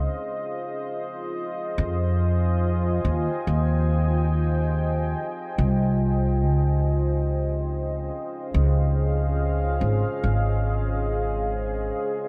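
A deep, moody ambient pad and a woody pizzicato upright bass open this spacious, meditative ambient dub fragment together. They move at 71 BPM in F minor with a light sixteenth-note swing, tuned to A4 = 442 Hz. The detuned, warbling pad sustains dark vintage chords from Fm7 to Dbmaj9 at 6.9 seconds, with slow-attack swells of chorus and its own reverb. The up-front acoustic bass, strung with steel, holds the low end until 11.9 seconds, all within a small, lightly reverberant room.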